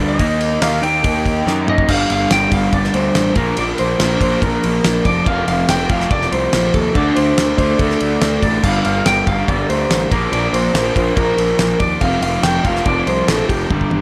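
The guitars and bass start together at the outset, with a slide guitar singing a melody between G4 and G5 over a raw, overdriven garage guitar riff and a fuzzy, growly picked bass, all in a driving, swaggering classic rock groove at 142 BPM in G minor. The damped 70s drum kit joins at 0.2 seconds, sounding dry and up front with a fat snare, tight kick, crashes, ride and toms. A drum fill at 1.5 seconds leads into the main section at 1.9 seconds, where the harmony moves through G5, Bb5, F5 and D5 power chords before cycling back. The slide guitar is slightly broken-up and compressed, while the double-tracked riff guitar carries a warm, picked crunch and the bass stays bright and amped. Light studio reverb frames the band, and another drum fill at 13.7 seconds closes this excerpt from a longer piece.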